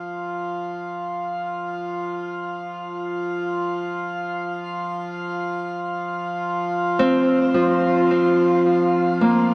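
A reedy, nasal hand-pumped harmonium drone fades in up front in a boxy small room, breathing beneath a long, wet shimmer reverb in this dark, free-time ambient fragment, until a ringing, fingerpicked Celtic harp enters at 7.0 s on an F5 chord with delayed arpeggios, leaving a spacious, reflective mood.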